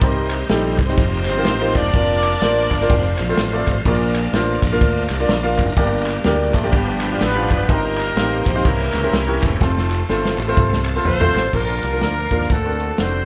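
Uptempo gospel with a soulful, jubilant swing, where a mellow, roomy horn section carries the melody over clear grand piano, a slow-rotary tonewheel organ shouting in the background, growly fingered bass, a tight soul drum kit and crisp group handclaps, while a twangy electric guitar slips in at 6.5 seconds and a raspy, growling trumpet joins the horns on the melody from 11.1 seconds as a drum fill winds down, all in a live-room studio reverb.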